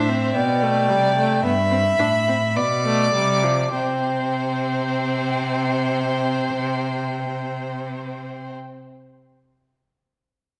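In a straight 4/4 pulse at 50-57 BPM that slows over the first 3.7 seconds, this joyful, stately baroque-style fugue for string quartet in C major sets a distant, expressive first violin singing high with vibrato and portamento over a warm, even second violin and a rich, smooth viola, while an up-front, focused cello carries the bass, each part bowed by a single player in a wet concert hall, as the harmony moves from C through G7 to C5 at 3.7 seconds in this short cut from a longer piece.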